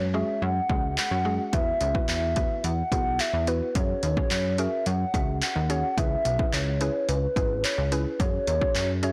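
Bittersweet and driving, this dance-pop fragment sets a hollow, square-wave synth lead with chorus, vibrato and dub echo over a punchy, funky sawtooth bass and a woody, warbling FM mallet pluck, both pumping to the sidechain, while a tape-warm analog drum machine of kick, handclaps and hi-hat enters at 0.7 s, all in a blown-out, overdriven mix with light reverb that circles between F#sus2, Esus2 and C#m7.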